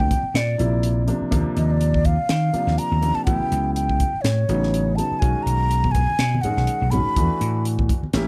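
Swung sixteenths at 123 BPM in 4/4 carry this nocturnal, slick electric jazz fusion excerpt, where a tight funk drum kit with a high-tuned snare and a punchy, growly vintage slap bass sit up front beneath a hollow, close-miked silver concert flute melody with vibrato, a warm baby grand piano supplies accompaniment over chords moving from Bb69 to Esus2, and low-tuned congas with soft hands join in the background at 5.8 s, all within a dark production with little reverb.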